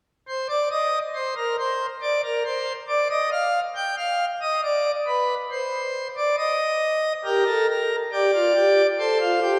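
Driving and solemn, this brief baroque-style three-part fugue fragment, cut from a longer piece, features a solo pipe organ principal chorus, full and up front with a romantic voicing, playing alone from 0.3 to 9.6 seconds in a straight 4/4 pulse, its lines moving through an opening passage of unnamed harmony before settling onto G minor and A minor chords, all bathed in a wet church reverb with a long 3.4-second decay.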